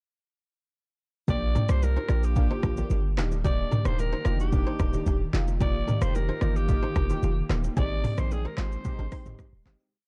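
A romantic, joyful afrobeats piece moves at an easy straight pulse, with a dark, warm, dry production. From 1.3 seconds a growling alto saxophone carries the melody in hook-like phrases, its raspy, breathy tone touched with vibrato and a digital delay, while round, detuned analog keys add syncopated chords through chorus and phaser. A crisp, ringing kora plays an interlocking repeated figure doubled in sixths behind them, and a faint granular pad enters at 2.5 seconds with cloudy, evolving sustained chords. Underneath, a deep, boomy 808-style bass sits up front with a bouncy syncopated line and slides, joined by an electronic drum kit with a soft kick, metallic hats, handclaps, toms, syncopated rim clicks and shaker, all given a gritty 12-bit sampler edge, plus very quiet congas and bongos. The harmony moves from Bb6 to Ebmaj7 and then to Abmaj7 as the piece fades out from 7.8 seconds.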